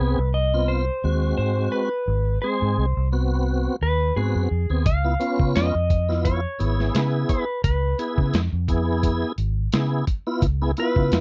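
Soulful and laid-back, this short excerpt from a longer straight-eighth soul blues moves at an easy 86 BPM in 4/4, with a light swing on the sixteenths and tuning set to A4 = 438 Hz. A clean lap steel guitar carries the melody up front, its fingered slide lines shaped by volume swells. Beneath it, a tonewheel organ fills in the harmony with a full, lightly overdriven tone colored by chorus vibrato and a slow rotary speaker. A vintage fingered electric bass, dark, round and foam-muted, sits close and up front from the start. At 4.9 seconds a lo-fi, sampler-style drum kit enters with hi-hat, a thumpy kick and a medium-tuned snare, sounding compressed, muffled and tape-warm, as the harmony shifts from Ab7#9 to Db7#9. The dry, close sound recalls a 1970s studio, keeping every part intimate and immediate.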